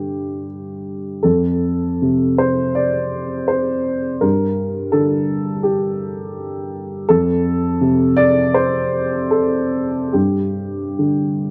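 A dark upright piano opens alone, playing a short solo passage that runs the full 11.5 seconds of this neoclassical minimalist excerpt, cut from a longer piece. The tempo moves freely in rubato between 70 and 86 BPM in 4/4, centred on F major, with a hopeful, tender mood. The harmony drifts between G5, F and Gmadd9 chords, returning to G5 near the end at 10.1 seconds. The piano's mellow, woody tone carries long sustain, sitting up front across a range from F2 to D5. The sound is dry and close, in the manner of a 1970s studio recording, with a small room ambience around the instrument.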